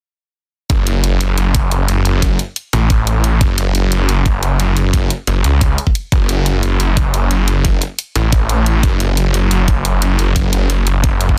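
Dark technical drum and bass at 177 BPM in F# minor, this futuristic excerpt runs from 0.7 seconds on a snarling, growling sawtooth bass with detuned unison layers, a moving notch, tube saturation and sidechain pumping sitting bright and up front between F#1 and C#2, driven by a knocking layered electronic kick and a quieter electronic hi-hat, all in a digital ambience with a dense, heavily limited modern master.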